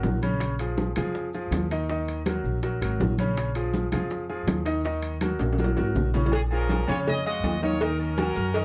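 A straight 4/4 salsa groove drives this fiery, danceable passage cut from a longer piece: damped, thin-skinned congas and round, low-tuned bongos with cowbell sit in the background, joined by ringing metal-shell timbales with agogo bells and grainy, mellow maracas. Up front, a woody, thumpy pizzicato upright bass on gut strings and a clear, polished concert grand piano with deep bass carry the harmony as it alternates between Bbm7 and Ebm. A drum fill at 5.4 seconds leads into a new section, where a tight trumpet section with light vibrato enters at 6.3 seconds to take the melody, all heard from further back in a small room with moderate reverb.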